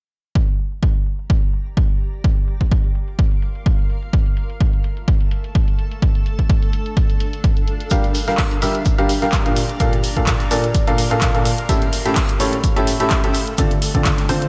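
Set in a small room with light reverb, this bittersweet, energetic piano house excerpt opens on a punchy electronic kick up front and a filtered analog drum machine of handclaps and hi-hats, while a cloudy, blurred granular pad fades in behind them from 1.6 seconds with sidechain pumping, and at 7.9 seconds a woody, slightly detuned upright piano riff with delay and long sustain joins up front alongside a dry, background 70s kit of hi-hat, shaker and fat snare.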